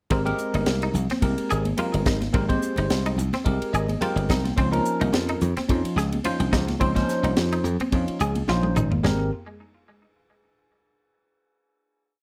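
Under light reverb, this slick, soaring piece of electric jazz fusion rides a swung groove from a tight funk kit with a high-tuned snare, bright cymbals and a fusion ride pattern, an up-front punchy thumbed slap bass riff, a bell-like phased tine electric piano playing syncopated chord stabs with a fill at 3.5 seconds, a twangy clean guitar ostinato wrapped in ensemble chorus and tape echo, and very quiet thick-skinned congas, before a drum fill at 8.5 seconds leads into the final chord at 9.0 seconds.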